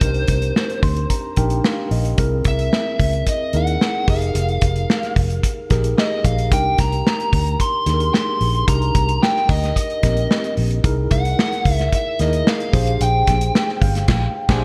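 A straight 4/4 groove from an up-front, tight-kicked studio drum kit with gated reverb and a round, foam-muted fingered bass carries this breezy, urban 1980s jazz-funk pop excerpt, as an overdriven lead guitar with subtle chorus sings the melody over a mellow tine electric piano that adds a fill from 0.6 to 2.2 seconds, moving through Cm9, C7alt, Fm11 and Bb13 before a band accent at 14.1 seconds in a bright digital production.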